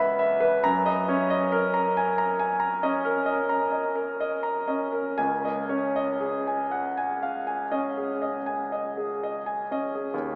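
A clear concert grand piano opens at once, sounding a C#m11 chord before moving to Gb69 at 0.6 seconds and settling on Dbadd9 at 5.2 seconds. This short excerpt from a longer piece of impressionist solo classical music has a nocturnal, mysterious mood, with a slow, rubato pulse drifting between 57 and 78 BPM in an unusual 5/4 metre. The piano ranges from C#2 to B5, with a deep bass and long sustain and a natural, up-front presence. A cathedral reverb with a 4.6-second decay surrounds the playing in a wet, lingering space, though the overall sound has the character of a small speaker. The piano plays alone throughout, ending at 10.4 seconds.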